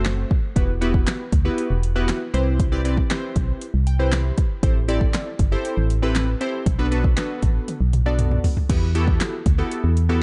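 Dance-pop in E minor at 118 BPM in a straight 4/4, this short cut from a longer piece feels driving and energetic from the first beat. An organ-like FM bass sits up front with a hollow, percussive tone and dark decay, moving with sidechain pumping. A deep house drum kit, layered and tape-warm, brings a deep kick, fat snare, metallic hats, handclaps, toms and a crash, with a drum fill from 7.7 to 8.7 seconds. Glassy digital keys add an airy, bright shimmer shaped by chorus, ring modulation, a noise layer and a filter sweep, pumping in the same way as the bass and taking a short fill from 3.6 to 4.6 seconds. The harmony opens on F#dim before moving through Emadd9, Cmaj7, Am7 and Bm7, returning to Emadd9 at 8.7 seconds. The production is dark, with digital ambience around the parts.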